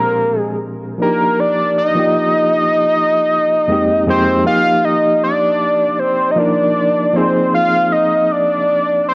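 R&B at 78 BPM with a light sixteenth-note swing, this short, late-night, soulful excerpt is cut from a longer piece. A fat analog lead carries the melody between Bb4 and F5, its detuned sawtooth and square-wave tone thickened by a sub octave, chorus and vibrato, with a filter sweep giving it an evolving, mellow character. Beneath it, an overdriven reed electric piano plays the accompaniment from F2 to Bb4, barky and gritty through a combo amp, pulsing with fast tremolo. Both parts sit up front and play throughout, moving through lush extended chords from Bb13 and Ebmaj9 to Fm11, then into a second section at 4.4 seconds over Ebmaj7 and Ab69. A moderate plate reverb surrounds the pair, and the whole recording has the worn, dulled sound of old cassette tape with a warbly pitch drift.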